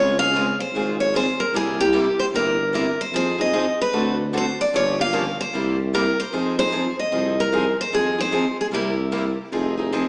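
Fiery and virtuosic, this short cut from a longer piece of jazz manouche swings hard at 150 BPM in 4/4 and F minor, with a 63% swing on the eighth notes. A bright, picked steel-string acoustic guitar carries the melody up front, its finger squeaks audible as it ranges from E4 to F5 until about 9.3 seconds. Two more picked acoustic guitars supply accompaniment beneath it, one sitting further back in the mix with its own faint finger squeaks. A mellow tuba, close-miked and played in a jazz style with light vibrato and scooped notes, holds down the bass between F1 and F2. The harmony moves from Dbmaj7 through C7, Fm7 and a Gm7b5 turn before settling back on Fm7, all bathed in the lingering reverb of a recital hall and heard through a small-speaker sound.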